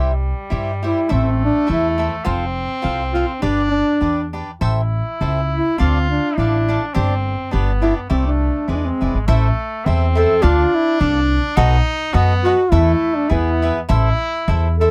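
A bright, distant and roomy trumpet playing a classical-style second line opens this proud, festive mariachi excerpt at 103 BPM in a swung, rubato 2/4, alongside crisp, picked acoustic cavaquinho and a woody, thumpy pizzicato upright bass up front, before a mellow, close-miked duduk enters at 0.8 seconds with a vibrato-rich, folk-style melody, all in a dry space with little reverb as the harmony moves from C major into A harmonic minor at 9.3 seconds.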